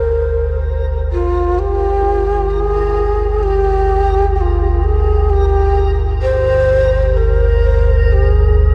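A breathy, bamboo-toned shakuhachi carries the melody up front, its end-blown chiff and vibrato trailed by delay, over a dark, cavernous ambient drone in G Phrygian at 64 BPM. Beneath it, a detuned sawtooth and pulse-wave analog drone sits low and close with subtle chorus and a filter sweep, while very quiet bronze gamelan-style bossed gongs play beating, metallic arpeggios and a reversed granular texture fades in from 0.1 seconds, dreamy and bright in the background. The whole short cut from a longer piece is bathed in huge ambient reverb and worn cassette-tape warble with drifting pitch.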